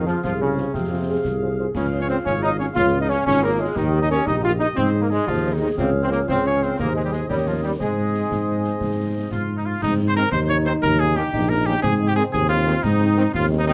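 A clear cornet with light vibrato carries the melody of this festive, spirited military-style wind band march in 6/8 at 119 BPM in Ab major, over bright, tight trombone chords and a vibrato-tinged tuba bass up front, while a mellow euphonium, a woodwind section, and a dark French horn section sit distant and roomy in the background, and concert snare drum, concert bass drum and shadowy clash cymbals sound close and dry throughout this 13.7-second fragment under light reverb.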